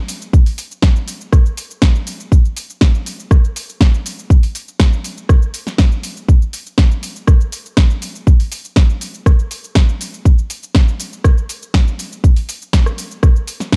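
A straight 4/4 pulse drives this sleek, cosmic nu-disco fragment, cut from a longer piece. The house drum kit comes in at 0.1 s with cabasa, hi-hat, rim click and snare, its hats bright and its snare punchy, layered and produced with an electronic edge. At 0.3 s the electronic kick drum joins, sitting up front in the mix as the loudest part, a layered, produced kick with real punch. Both parts carry on together until the end at 13.8 s, holding to a single section throughout. The drums are wrapped in a digital ambience, and the dark, warm production lends the groove a nocturnal, spacious sheen.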